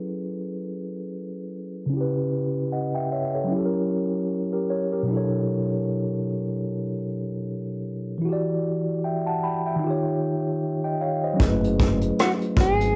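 A mellow, clean tine electric piano opens this reflective, nostalgic lo-fi hip hop excerpt in F# minor at 76 BPM with a 16th-note swing, its cassette-tape tone softened by a low-pass filter and a filter sweep through jazzy chords like F#m11 and Bm11, before a roomy brush drum kit with a punchy kick and a deep, round analog bass with tube saturation arrive at 11.4 seconds and a dark, fingered electric guitar melody with tremolo joins at 12.2 seconds, all in a lo-fi home cassette sound with moderate reverb.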